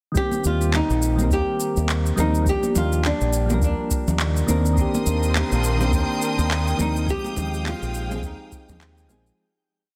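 A swung 104 BPM groove in 4/4 drives this blissful, smooth sunset chillout piece in Eb major, built on a deep, soft electronic kick, a light lounge beat of shaker and handclaps, and damped, high-tuned congas in the background, with a round, punchy fingered electric bass with an envelope filter sitting up front. Mellow, chorused electric-piano-like synth keys hold chords with syncopated pushes through a low-pass filter and tape echo, while a fingerpicked flamenco guitar, also touched by tape echo, carries a motif-based melody of call phrases over changes from Eb6 through Gm7 and Cm9 to Fm9. A lush, bowed symphonic string section with vibrato enters at 4.8 seconds, a sparkling granular shimmer holding a high note joins at 5.2 seconds, and the dense, heavily limited piece fades out from 6.3 seconds.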